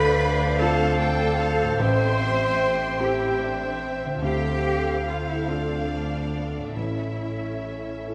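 A dark, reverberant concert-hall sound frames this bittersweet, longing fragment of cinematic film score in D minor, moving at a rubato 46-50 BPM in 6/8 and tuned to A4 = 439 Hz. A lush violin section carries the melody with vibrato and a smooth top, while a clear, distant second violin section, a pure silver flute and a soft-attacked clarinet trace second lines above a background of a lush viola section, a mellow French horn section holding sustained chords, and a felt-muted upright piano whose intimate tone carries audible action noise. A bright, ringing harp adds very quiet fingerpicked arpeggios, and cello and double bass sections anchor the bass, the basses up front, as the harmony moves through Dm7, Am7 and back to Dm7 before settling on A at 6.8 seconds.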